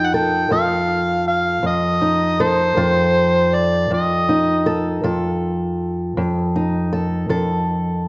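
An overdriven, gritty harmonica and a fingerpicked ladder-braced acoustic guitar start together over an F7 chord in this soulful, rollicking acoustic country blues fragment in a straight 12/8. The amplified harmonica sings up front with light vibrato, tongue slaps and a jazz-tinged solo line until 4.7 seconds, while the guitar's old strings give a woody, boxy accompaniment that carries on alone to 8.1 seconds. A wet scoring stage reverb wraps the dark production.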